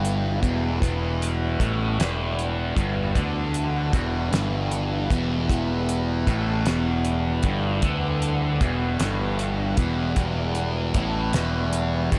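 Trippy and mysterious, this psychedelic rock passage, cut from a longer piece, rests on a single chord in a straight 6/8, with a thick, double-tracked fuzz guitar riff up front, drenched in distortion, phaser and tape echo, over an overdriven, picked electric bass. A cloth-damped drum kit thuds beneath them with a fat snare, tight kick, hi-hat and a rolled-off top. In the background, a reedy, nasal hand-pumped harmonium breathes sustained chords while a very quiet tanpura adds a buzzing, shimmering drone, all set in an echo-heavy mix with light reverb and small room ambience.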